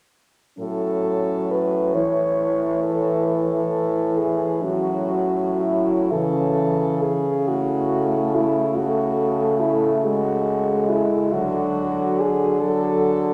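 Moving in a slow, rubato 12/8 at about 39-48 BPM in dotted quarters, this lyrical classical passage for French horn quartet in A major is cut from a longer piece and carries a warm, lyrical mood. From 0.6 to 13.3 s a warm lead horn carries the melody up front over a dark, smooth-topped second horn set in the background, an inner accompaniment horn with light vibrato, and a clear, soft-attacked bass horn. The harmony moves from A to A/C# and arrives on D at 11.3 s, all inside a wet church reverb with a long, resonant tail.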